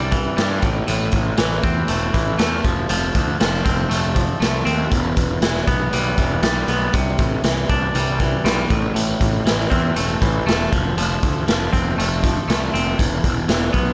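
A steady, straight 4/4 pulse at 119 BPM drives this short cut from a longer quiet-loud alternative rock piece in A minor, its mood brooding yet cathartic. A raw garage drum kit enters at 0.1 seconds with hi-hat, a punchy kick and a medium-tuned snare, its sound saturated and gritty with a rolled-off top and a stone-room character, sitting up front. Beneath it, a fuzz picked electric bass growls through overdrive, direct and amped and also up front, holding the low end between E1 and G2. A twangy electric guitar plays clean, compressed arpeggios from E2 to D4, trailed by analog delay and sitting a little further back in the balance. The harmony moves through Cadd9, Am, F and Em, then returns to Cadd9, Am and F before landing on an E5 at 13.0 seconds, all in a dry, close-sounding mix with little reverb.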